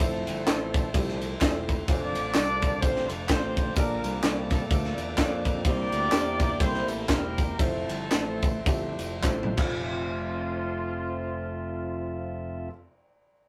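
Jubilant and uplifting, this uptempo gospel excerpt swings in 4/4 as a punchy, tight horn section carries the melody with vibrato and octave doubling, sounding distant and roomy over an intimate grand piano with audible action noise and a clean tonewheel organ with key click holding sustained chords in the background. A bright, growly fingered electric bass drives below while an up-front acoustic drum kit with a high-tuned snare and punchy kick pumps in the small room, joined by egg shaker and group handclaps until 10.2 s. The band slows from 5.6 s, and a drum fill leads to the drums stopping at 9.7 s, all captured as a rough rehearsal-room recording.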